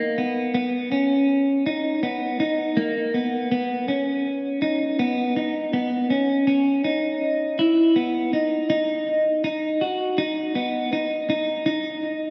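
A clean electric guitar plays alone from the first moment, bright and twangy with a lush chorus and tape echo, picking out a blissful, dreamy dream pop line in straight 4/4 at 81 BPM, sitting up front in a reverb-soaked mix whose long, lush hall tail carries it through a shift to a new section at 8.7 seconds until this excerpt from a longer piece ends at 12.3 seconds.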